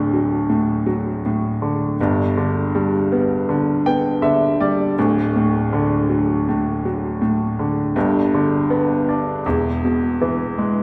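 A grand piano carries this short folk passage on its own, playing throughout its roughly 10.8 seconds with an intimate, boxy tone placed up front, where the clatter of its action can be heard. The mood is hopeful and tender, and the straight 4/4 pulse keeps the feel unhurried. The piano spans a range from D1 up to G5, moving through a simple progression of D, G, back to D and G, before turning to E at 9.4 seconds. A slapback echo clings to the piano's notes, and the whole performance sits in the generous reverb of a recital hall. The clip is cut from a longer piece, so it stops mid-thought rather than reaching a close.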